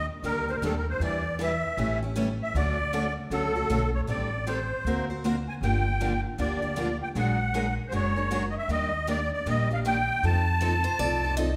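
Heard in a reverberant church or concert hall with a lush, lingering wash of reverb, this excerpt of acoustic string swing in the jazz manouche style feels charming and playful, with a lilting swung eighth-note pulse. Up front, a musette accordion carries the melody with a reedy, shimmering voice, its musette tuning giving it a smooth, dark sheen. Beneath it, a pizzicato upright bass on gut strings sounds woody and thumpy, also placed close in the mix. Two picked steel-string acoustic guitars supply the accompaniment from 0.2 seconds, one boxy with a parlour character and the other fresh-stringed with audible finger squeak, both bright. Near the end, at 10.6 seconds, a third picked guitar with a bright, boxy tone slips in with a brief second line as the harmony moves through rich jazz chords such as Ebmaj7, Gm7 and a closing F7.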